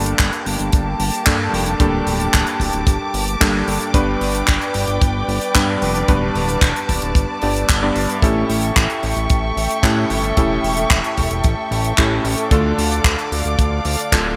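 Bright 1980s-style digital production with a moderate plate reverb frames this short, melodramatic and bittersweet italo disco passage, cut from a longer piece and moving at 112 BPM in a straight 4/4. A fat, thick analog bass with a detuned sawtooth edge and saturated, fast-attack tone holds the low end, while an electric grand piano with chorused unisons and a clangy bass register plays stabs through a delay. Behind them, a dark, con sordino string section sustains veiled, bowed chords with vibrato and a smooth top. The drums have a dry, polished, acoustic character: a tight kick anchors the beat, and an up-front funk kit adds handclaps and hi-hat in a small room ambience. The harmony moves from Gmadd9 to G at 3.9 seconds, then to A7 at 8.2 seconds before settling on Dm, giving the passage its yearning pull.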